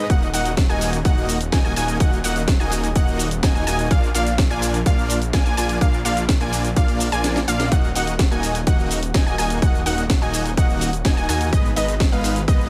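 A straight pulse drives this powerful, emotional festival progressive house passage: a punchy, up-front electronic kick and a tape-warm house kit of cabasa, hi-hat and cracking snare, with the kick dropping out for a brief drum fill between 7.2 and 7.7 seconds. A huge, thick supersaw riff, a lush chorused saw bass and a bright, gritty 12-bit-flavoured pluck arpeggio all pump against the sidechain. The supersaw and pluck trail delay over minor-key chords in light reverb.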